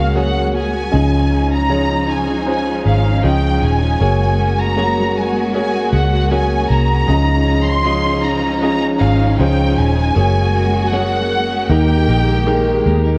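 In a straight, unhurried 4/4, this hopeful and emotional pop ballad fragment, cut from a longer piece, moves between Gbadd9 and Dbadd9 chords before reaching Eb at 11.7 seconds. A distant violin section carries the high melody with a soft attack, expressive vibrato and gliding portamento, while a bowed string section holds sustained chords in the background. An intimate grand piano accompanies throughout, its natural tone carrying audible action noise. Beneath them, a bright, twangy clean electric guitar, recorded direct and compressed, picks arpeggios in the background, and a dark, round, foam-muted fingered electric bass sits up front with a punchy, amped presence. A very quiet electronic swell enters at 12.0 seconds. The whole mix sits in a lush hall reverb and carries the worn, warbling pitch drift of old cassette tape.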